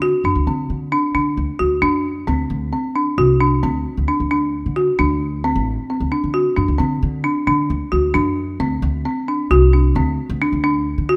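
A folk marimba struck with hard mallets leads this playful, shimmering piece of contemporary chamber music, its bright, dry, rustic hardwood tone up front as it spins arpeggios through the full 11.2 seconds. Beneath it, a thumpy pizzicato upright bass with steel strings holds the low end, also close and present. Cut from a longer work, the passage moves at 133 BPM in an uneven 7/4, resting on a D7 chord in D mixolydian, tuned to A4 = 438 Hz, with light reverb around it.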